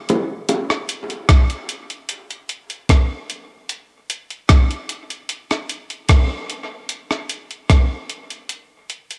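A dry home cassette recording with little room sound opens this short reggae fragment, cut from a longer piece, at a straight 75 BPM in 4/4 and a meditative, heavy mood. A sampler-style breakbeat kit sits up front, compressed and gritty, with a thumpy kick, hi-hat and rim click carrying the tape's own grain. Tight, high-tuned acoustic bongos with a dub echo appear only at the very start, gone by 0.7 seconds. One part is muted from 0.5 to 6.9 seconds, and a new section begins at 6.9 seconds with the drums carrying through to the end.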